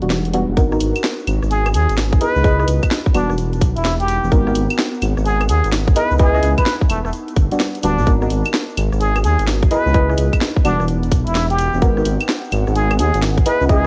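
A plunger-muted trumpet with breathy wah-wah vibrato carries a jazz-style solo from 1.5 seconds over a skippy, bouncy two-step UK garage groove at 128 BPM in G# minor, built on a deep, rumbling detuned saw bass, a tight up-front electronic kick, cracking snare and warm hats with claves and rim clicks through cassette-tape grit, nasal chorused chord stabs with tape echo cycling Em9, G#m9 and C#m9, a faint grainy egg shaker, and a very quiet ethereal pad, all from a longer piece recorded at home on cassette.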